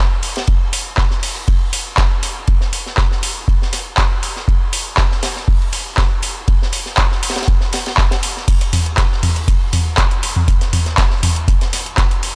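A hypnotic, trippy house excerpt in straight 4/4 at 120 BPM opens at 0.2 s with a booming, dry analog drum machine up front, its metallic hats, crash cymbal, handclaps and toms sitting over a quieter, tight acoustic funk kit with bright, high-passed cymbals, hi-hat, ride and a high-tuned snare, before a deep, tape-warm electronic kick lands up front at 0.5 s, the groove set in light studio reverb.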